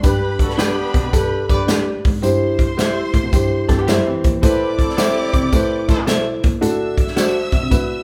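Danceable and uplifting, this uptempo 1960s-style soul excerpt at 109 BPM in G major swings over a punchy, up-front acoustic drum kit and a jingly tambourine, with a bowed cello carrying the bass with vibrato and portamento, a dark, boxy grand piano accompanying, lush, distant violins playing a second line throughout, a roomy horn section adding its own second line until 6.0 s, a twangy, slightly broken-up electric guitar adding stabs through spring reverb in the background, and a clean hollow-body archtop guitar sounding at the very start and returning with a brief riff from 3.7 to 4.4 s, all captured as a band playing live in one room.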